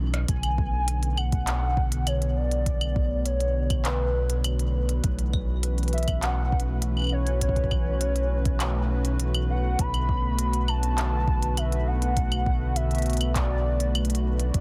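IDM at 101 BPM in B minor, this eerie, intricate passage is cut from a longer piece and moves through Bm7, A69/B and back to Bm7. A hollow, flute-like pad holds sustained chords from the start, its square and triangle tones softened by chorus and a vintage 12-bit sampler grit. Underneath, a round analog bass sits deep and up front on B1, its sawtooth and sine blend shaded by ring modulation. A drum fill opens the passage at 0.0 seconds, and an organic electronic kit of claves, handclaps, smooth hi-hat and rim click comes in, joined at 0.3 seconds by an overdriven soft kick, both re-recorded in a small room. At 0.3 seconds a warbling, nostalgic lead also enters, gliding with portamento and vibrato between B4 and B5 through analog chorus, cassette tape colour and tape echo. The mix is dry, with a dense, heavily limited modern master.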